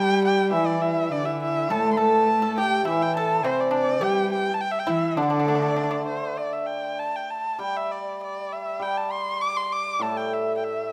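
This graceful, pastoral excerpt of Chinese traditional chamber music opens with four parts at once: a bowed erhu carries the melody up front and close, while a hollow, airy bamboo xiao and a distant bowed cello trace second lines beneath it, over the shimmering, ringing hammered dulcimer accompaniment. The erhu sings with vibrato, portamento and a soft attack, sounding warm and expressive as a single player. The cello echoes that vibrato and sliding quality from further back, and the end-blown xiao keeps a mellow straight tone with tongued notes. At 1.7 seconds a dry, percussive pipa played with fingerpicks joins as another second line, and it falls away together with the xiao and cello around 6 seconds. The piece moves freely in rubato within a 2/4 frame, and the second section gives the erhu and dulcimer the stage alone in a moderate scoring-stage reverb.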